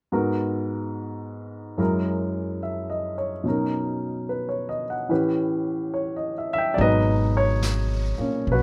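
Intimate and smoky, this short excerpt from a longer jazz ballad sits at 72 BPM in G# minor with a swung feel, its dark, warm production carrying little reverb. A grand piano with short sustain plays accompaniment alone from the start, moving through G#m7, F#7, Bmaj7 and A9, until a woody, pizzicato upright bass and a softly placed brush kit of snare and hi-hat join at 6.8 seconds as the harmony lands on G#m9. Piano and bass both sit up front, while the brushed drums sit quieter in the mix with a natural small-room sound.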